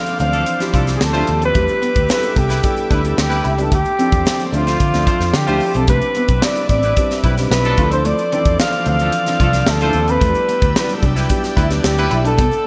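Polished 1980s jazz-funk pop with a slick, bittersweet mood, this excerpt puts a warm, vintage flugelhorn melody with vibrato up front over a crisp fusion drum kit with a punchy kick, a high-tuned snare and gated reverb, plus a round, foam-muted fingered bass. A dark, mellow concert grand piano with subtle chorus carries the accompaniment, while a clean, picked electric guitar riff, a tight horn section playing a second line and a thick, warbling detuned sawtooth pad sit in the background. A grainy tube shaker adds very quiet, close percussion, all within a lush hall and a bright digital 1980s-style sheen as the chords move between Dm7, Em7 and Cmaj9.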